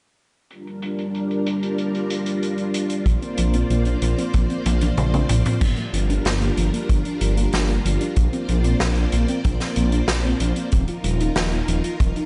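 Synthwave excerpt with a nostalgic, cinematic mood, where a lush, vintage string machine with ensemble chorus and sidechain pumping holds sustained chords from 0.5 seconds alongside a street-band drum kit with dark cymbals, both under filter sweeps that run until 5.6 seconds, with a drum fill entering at 4.7 seconds, while from 3.1 seconds a thick, saturated detuned saw bass, a boomy up-front kick and soft, round pluck arpeggios with digital delay join as the chords move from Gm7 through Bbadd9 to Ebsus2 in a small room ambience.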